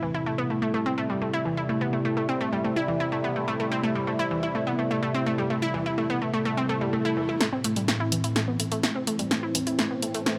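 Hypnotic and melancholic, this melodic techno excerpt moves at 126 BPM in 4/4. It opens on a C chord, with an evolving, wave-folded resonant pad holding sustained chords through chorus and phaser while a bright, up-front sawtooth unison pluck spins arpeggios through tape echo. An electronic swell sounds in the background at 6.7 seconds, and at 7.4 seconds a punchy, tape-warm analog drum machine enters with low-pass-filtered hi-hats and snare, playing a drum fill across the build-up in a lightly reverberant space.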